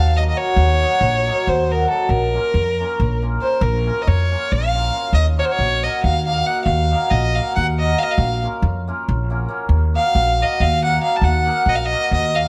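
A rich, focused fiddle takes the solo from the first second, bowed with light vibrato and sitting up front over a bright, shimmering hammered cimbalom and a woody, thumpy pizzicato upright bass. This fiery, restless Balkan wedding-band folk tune drives along in 7/8 at 276 BPM counted in eighths, set in E-flat minor and moving between E-flat minor and B-flat minor chords. Close, detailed microphones and light reverb keep the playing vivid through this 12.5-second section cut from a longer piece.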